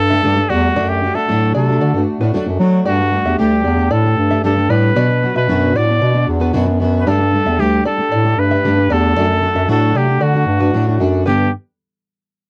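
A breathy, whispered trumpet carries the melody up front, its soft attack, gentle vibrato and vintage tone giving this sunny, carefree pop piece an intimate feel. Beneath it, a mellow bass clarinet with a smooth top supplies the bass line in a classical style, sitting prominently in the mix. A double-tracked, fingerpicked steel-string acoustic guitar with a jumbo, full-bodied sound fills out the accompaniment, and a touch of finger squeak can be heard. An open-back banjo enters at 0.1 seconds with twangy, plunky arpeggios that stay percussive and in the background. The harmony moves between Gsus2, D/F#, and Bm before arriving on G at 11.3 seconds, where a new section begins just before this cut from a longer piece ends. The sound is dry and close, with little reverb, recalling a 1970s-style studio recording.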